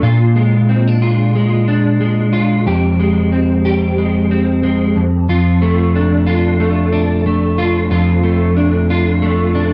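A clean electric guitar opens this short indie pop excerpt, playing alone and up front for its full 9.7 seconds. The picked tone is warm and clean, thickened by an ensemble chorus and a vibrato effect. The part moves through a Bb7, an Fmadd9 at 2.7 seconds and an F6 at 5.0 seconds, spanning a range from low F2 up to G4 over a lightly swung sixteenth-note feel in common time. The guitar sits in a wet studio reverb with a short decay, and the production leans dark. The mood is wistful and mellow.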